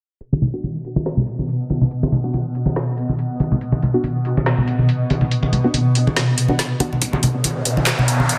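A dense, heavily limited mix in a moderate echo-chamber reverb carries this heavy, cavernous deep dubstep excerpt in B minor at 141 BPM with a swung half-time feel: an up-front, overdriven garage kit of woody snare, metallic hats and handclaps and close acoustic congas play alongside a blurred, evolving granular cloud pad holding chords on B2, muted, detuned sawtooth dub chord stabs pass through phaser, lush chorus and dub echo under a filter sweep, and at 7.0 s a muffled, pitched-down thumpy kick sounds in the background as the build-up begins, with an electronic riser entering at 7.4 s.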